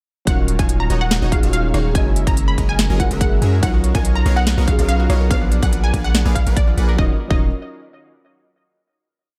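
A deep, sine-toned 808-style bass sits up front in this bittersweet, emotional future bass piece in Eb minor at 143 BPM, following the chord rhythm under a punchy, overdriven half-time kick and a trap kit of sharp snare, rim clicks and crisp hats with rolls, captured in a small room. Over Ebm9, Gb9, Bmaj9#11 and Bb7b9b13 changes, a detuned supersaw plays dotted-rhythm stabs with a filter sweep and lush chorus. A mellow felt-muted upright piano, its action noise audible, holds rootless chords with syncopated pushes, while a sawtooth unison pluck repeats the melody; these three parts all pump with the sidechain and carry tape echo. From 3.6 s a very quiet ring-modulated pluck adds a 6-step arpeggio drifting against the bar, and at 7.0 s the drop gives way to a final Ebm9 chord under light reverb.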